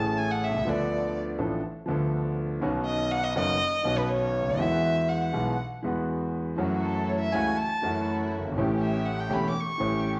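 Tango at 122 BPM in A major, sultry and passionate with a rubato feel, cut from a longer piece. An expressive solo violin sits up front with vibrato, portamento and a soft bowed attack, while a warm concert grand piano with deep bass and a natural tone accompanies through chords such as Amaj7, Dm6 and F#m7. At 6.6 seconds a dark, woody studio string section adds soft background stabs, all set in a wet echo chamber reverb with small room ambience.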